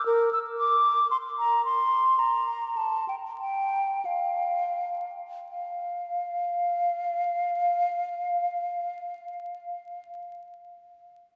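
This classical, baroque-style fantasia for unaccompanied flute unfolds in F major and 3/4 time, its mood radiant and serene. A silver concert flute plays solo throughout the brief 10.1-second fragment, cut from a longer piece, ranging from Bb4 up to E6 with a mellow, hollow, airy tone, vibrato and tongued notes. The tempo moves freely between 78 and 116 BPM with a rubato feel, and the line slows down from 0.8 to 5.5 seconds before a new section begins at 5.5 seconds. The flute sits up front, yet the whole sound is heard from further back in a wet cathedral reverb with a long, lingering tail. A vinyl crackle adds an aged patina to the recording.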